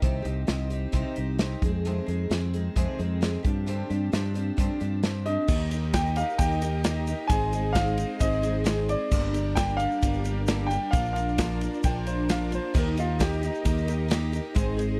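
Folk rock with a heartland rock lean, this wistful, reflective 15-second excerpt moves at 132 BPM in a straight 4/4, built on a shimmering, octave-doubled picked twelve-string acoustic guitar, an up-front fingered electric bass and a punchy natural country drum kit, moving from Cm through Fm7 to G7sus4 before settling into Eb, Ab, Gm and Bb. At 5.5 seconds a soft-bowed studio string section with vibrato and a grainy tube shaker join in the background, just after a clear grand piano takes the high melody, which hands off at 11.8 seconds to a brilliant, woody upright piano playing a second line. The recording is dry and close in a 1970s studio style.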